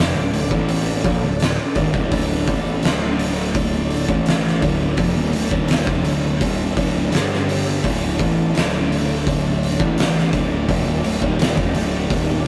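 A straight 4/4 pulse at 84 BPM drives this brooding, ominous stoner and doom metal passage in D phrygian, cut from a longer piece. An oversized, low-tuned acoustic drum kit sits up front with a punchy kick, fat snare, hi-hat and a gritty, pumping stone-room sound. Two dark, fuzz-distorted guitars play a riff in the background over a growling, overdriven picked bass, while a very quiet, lush vintage string machine holds sustained sawtooth chords from Dm to G5 at 7.1 seconds and back to Dm, all captured as a rough rehearsal-room recording with tube saturation and light reverb.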